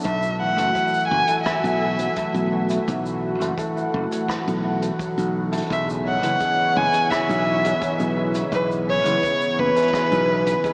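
A straight 4/4 pulse at 85 BPM comes from a brushed jazz kit of hi-hat, rim click and shaker, with a boomy kick sitting in the background and a bright, growly fingered electric bass holding the low end. In this wistful, intimate folktronica fragment, a close, bowed violin carries the melody up front with vibrato and portamento, roughened by 12-bit sampler grit and trailed by analog delay, while a mellow concert harp rings out arpeggios through its own delay. A smooth, dark pad of detuned sawtooth tones with chorus sustains the chords, moving from F#m7 to C#m7 at 5.7 seconds, and the whole dreamy mix is soaked in huge reverb, vinyl crackle and a small-speaker sound.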